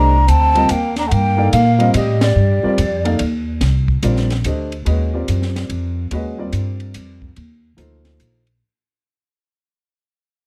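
Dark, warm production with a light reverb gives this brief modal jazz excerpt a hypnotic, intense mood, swinging in 3/4 at 144 BPM in C dorian over a Cm9 chord, tuned to A4 = 441 Hz. A breathy, hollow metal flute carries the melody from a distant place in a plate reverb, its tongued chiff and vibrato set over a whispered tenor saxophone playing a soft-attack second line beneath it. Both horns drop out at 3.2 seconds, shortly after a band accent at 2.2 seconds. A concert grand piano supplies accompaniment with deep bass and audible action noise, while a woody pizzicato upright bass with steel strings sits up front. A compact cocktail drum kit adds dry hi-hat, ride cymbal, punchy kick and a high-tuned snare with dark cymbals, and the rhythm section plays on through a fade-out that begins at 3.6 seconds.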